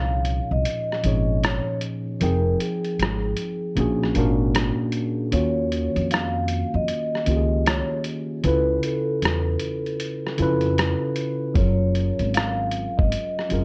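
Lo-fi hip hop at 77 BPM in Bb minor, reflective and nostalgic, with a swung 16th-note feel over rich jazz chords moving from Bbm11 through altered dominants to a closing Gbmaj9. A mellow, close-miked vibraphone played with soft mallets carries the melody, its metallic ring and motor vibrato softened by a low-pass filter. A worn, slightly out-of-tune tine electric piano sits up front with cassette-tape color, a woody pizzicato upright bass thumps beneath, and from 0.2 seconds a muffled, pitched-down sampler-style drum kit adds a thumpy kick, hi-hat and rim click, all set in moderate studio reverb in this cut from a longer piece.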